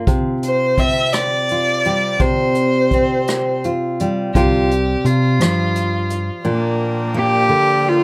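A slow 6/8 sway at 57 BPM carries this heartbroken, intimate folk-pop ballad fragment, where a bright, full-bodied jumbo steel-string guitar is fingerpicked up front with audible finger squeak, a vintage brush kit adds hi-hat, rim click and a punchy kick, and a rich, smooth bowed violin sings a solo until 4.3 seconds before a direct fingered electric bass joins at 4.4 seconds, and at 6.5 seconds an earthy, lightly vibrato cello takes the melody over a warm sul tasto chamber string section in the background, all in a moderate booth ambience.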